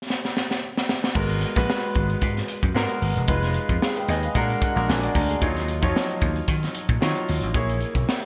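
Polished 1980s jazz-funk pop with a bittersweet, urban mood opens with a drum fill on a crisp fusion kit, its high-tuned snare, punchy kick, hi-hat and crash sounding gritty and up front in a pumping small room. A clear grand piano with lush chorus enters at 1.1 seconds, and a growly, amped slap bass joins at 1.2 seconds under rich chords like G#m9 and A#aug7, with the piano taking a fill from 3.8 to 5.4 seconds. Light reverb and bright digital production give this cut from a longer piece a sheen.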